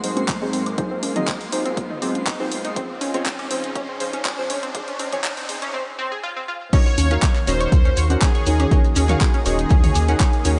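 Progressive house with a dreamy, bittersweet mood, this excerpt opens on a build-up where a lush, thick unison pad holds sustained chords in the background, while a tight, driving sequenced synth runs arpeggios and a deep, mellow chord stab adds soft, full-bodied hits, both roughened by vintage 12-bit sampler grit, carried on delay and shaped by filter sweeps. A layered deep house kit of handclaps, hi-hat and crash cymbal joins a punchy, up-front electronic kick, with overdriven electronic congas, woodblock and toms sitting far back in a large room, and the pad, arpeggios, stabs, percussion and toms all pumping against the sidechain. An electronic riser climbs in the background until 5.7 seconds, and a very quiet, twinkling granular texture with an octave-up shimmer glints above. At the drop at 6.7 seconds, a smooth, phased supersaw takes the melody alongside a grainy, close and dry shekere, and at 7.0 seconds a round, dark analog bass arrives with its own sidechain pumping. 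The harmony moves from Ab7 to Dbmaj7 and settles on Ebm7 for the drop, all set in light digital ambience.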